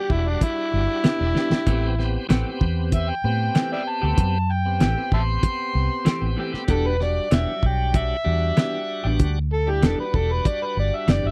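A straight-eighth soul blues groove in 4/4 rides on a cloth-damped, thuddy drum kit with a fat snare and a tight kick, and a short drum fill at 1.4 seconds leads the shift from Em7 to Am7. A gritty, amplified harmonica carries a brooding, soulful solo throughout, with light vibrato, tongue slaps and scooped notes in a jazz style. Around it sit a round, foam-muted fingered bass, a bright, shouting tonewheel organ turning through a slow rotary speaker with key click, and compressed, clean picked guitar stabs entering at 1.0 second, all in a dry, close 1970s-style studio sound.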